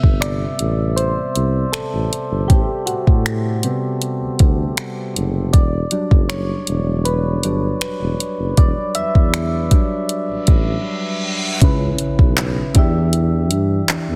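Dry, dense and heavily limited, this moody, sensual contemporary R&B fragment sets round, chorused electric-piano-like synth keys, featured as the lead until 11.6 seconds, over a mellow tuba bass with jazzy vibrato and scooped notes and an up-front electronic drum kit of finger snaps, handclaps, soft kick and warm hi-hat with a softly clipped snare, while a reverse cymbal enters at 10.5 seconds ahead of a brief break and an electronic impact lands at 11.6 seconds.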